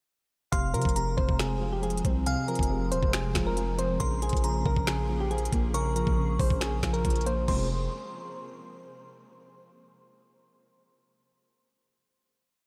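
Hip hop trap with an eerie, dark mood, built as a short, complete piece around one looping hook that settles on a final chord at 7.5 seconds, its tail hanging in a huge ambient reverb that leaves the whole mix dreamy and soaked. Up front, a half-time trap kit pairs a knocking kick and crisp hats, with fast hi-hat rolls, against a woody snare layered with finger snaps, plus a crash cymbal. Beneath it, a deep, sine-toned 808-style bass holds long sub notes that follow the kick and bend with pitch slides, ringing on until 7.9 seconds. The melody comes from soft, round electric-piano-like synth keys repeating like a sampled loop, while a glassy, crystalline bell adds a sparse, bright counter-melody above. A warbling, lo-fi detuned pluck cycles an eighth-note arpeggio with a filter sweep, and a hollow, flute-like pad sits in the background holding slow-blooming chords as the harmony moves from F minor to B-flat minor seventh and back.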